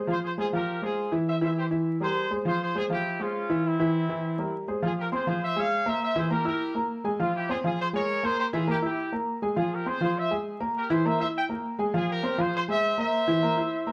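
A fast, straight 4/4 Latin groove at 202 BPM drives this fiery, danceable fragment in F harmonic minor, where a woody, slightly detuned upright piano with audible action noise accompanies from the start while a punchy, tight trumpet section with vintage vibrato and plate reverb carries the melody up front over alternating Fm and C7 changes, all set in a small, reverberant room under a layer of vinyl crackle.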